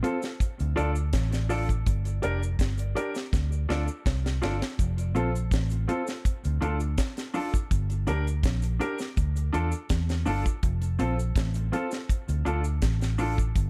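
Dry, with little reverb, this sunny, laid-back roots reggae passage is cut from a longer piece and moves through Dm, Gm and F. A deep acoustic drum kit with a high-tuned snare and tight kick sits up front and plays a fill from 3.3 to 4.8 s, joined at 0.6 s by a round, foam-muted vintage electric bass, while a mellow, clean, compressed electric guitar with tape echo and a woody upright piano stabbing chords with long sustain and audible action noise fill out the accompaniment. A band-limited cabasa sits in the background.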